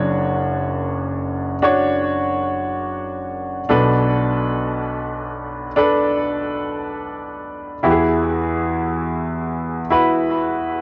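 Melancholic and emotional, this short pop fragment features a solo grand piano moving through Dmaj7/F#, Bm7 and Eadd9 in a straight 4/4 pulse. The piano sounds clear, intimate and up front, with audible action noise and tape echo. A light reverb and the character of a home cassette recording frame the playing.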